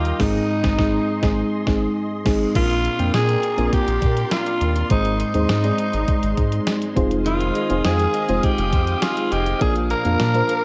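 Nostalgic and romantic, this short excerpt is 1980s-style pop in Bb mixolydian, moving at a straight 102 BPM in 4/4 through a dreamy mix soaked in moderate plate reverb. Up front, a growling tenor saxophone carries the melody with a breathy, raspy tone, light vibrato and scooped notes, its line trailed by delay. A mellow FM electric piano with a warbling chorus and a silky string machine with slow-attack, ensemble-chorused chords fill the background, while a round, deep analog bass anchors the low end until 10.4 seconds. A clean 12-bit drum machine with a thumpy kick, fat snare, hi-hat, tambourine and crash enters at 0.1 seconds, and the band hits an accent from 0.2 to 2.6 seconds. A direct-recorded clean electric guitar plays a compressed, picked riff at the very start and returns at 7.3 seconds, as the harmony moves from Ab through Bbadd9 and Fm7 before landing on Bb.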